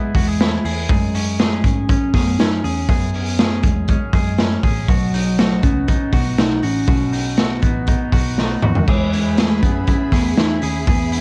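Jangly indie pop in E major at 120 BPM, nostalgic and bright, where a hollow, woody synth lead with chorus, phaser and cassette-tape coloring carries the melody over twangy clean electric guitar arpeggios, a round foam-muted picked bass and a gritty, punchy garage drum kit up front, with a drum fill at 8.4 seconds leading into lush, distant bowed strings at 8.9 seconds, all in a light-reverb home cassette recording cut from a longer piece.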